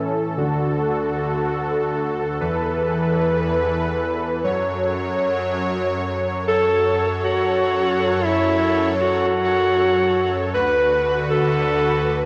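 A smooth-topped alto saxophone with vibrato carries a pop-style solo melody up front from 6.5 s, drifting over a soft, mellow supersaw whose detuned sawtooth unison holds evolving chords throughout this nostalgic, cinematic synthwave fragment cut from a longer piece. The harmony moves from D through Esus4 to F#m and later settles on D6. Both parts carry a cassette-tape coloring, set in a brief, wet booth ambience that gives the whole a homemade, warm intimacy.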